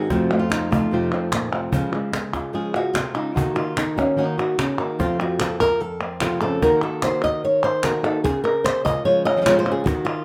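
An up-front fingerpicked flamenco guitar with fresh strings carries a dramatic, fiery melody and takes a nylon-string solo from 1.7 seconds, while a second, boxy guitar with audible finger squeak plays stabs over F, Db and Ebm chords, backed by a snappy cajon with snares and crisp, band-limited palmas hand claps in light reverb, in this short cut from a longer flamenco piece.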